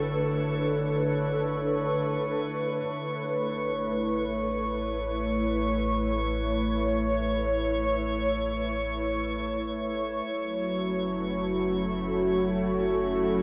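Luminous and peaceful, this free-floating ambient passage cut from a longer piece sets a pure, organ-like pad with ensemble chorus and shimmer reverb up front beside a glassy texture of drifting overtones, while a round sub bass sits deep underneath and a nasal, string-like drone hovers in the background until 2.9 seconds and returns at 10.7 seconds, all of it bathed in cathedral reverb and the warble of worn cassette tape.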